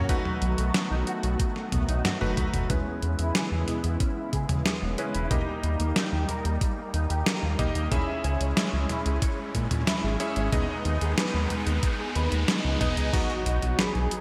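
A straight 4/4 pulse at 92 BPM drives this nocturnal, moody synthwave passage in G# harmonic minor. A thumpy, tape-tinged electronic kick pairs with a detuned 8-bit drum machine whose snare, hi-hat, toms and crash sit up front in gated reverb, and a drum fill arrives at 1.7 seconds. A round, deep analog bass anchors the low end while a lush, airy unison pad holds sustained chords, colored by chorus, phaser and sidechain pumping. A clean, dark electric guitar plays arpeggios in the background through ensemble chorus, delay and a low-pass filter, and a cutting, clangy electric grand piano adds stabs with delay; both carry a long filter sweep through the middle stretch. Very quiet electronic effects rise into a noise sweep, a brassy, detuned synth brass melody with vibrato enters at 12.5 seconds, and an impact lands at 13.1 seconds as the harmony, having moved from B7 through E6, D#, C#m and G#m/D#, settles on B, all set in a wet hall reverb with a 1980s-style digital production.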